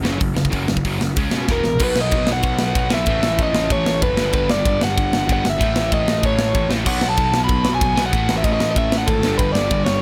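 Punk rock with a rebellious, upbeat drive, cut from a longer piece, where a bright, double-tracked distorted guitar riff and a growly fuzz bass push beneath a tight, up-front metal drum kit with bright cymbals, until a drum fill at 1.5 seconds brings in a compressed, overdriven lead guitar melody carrying digital delay over a dry sound.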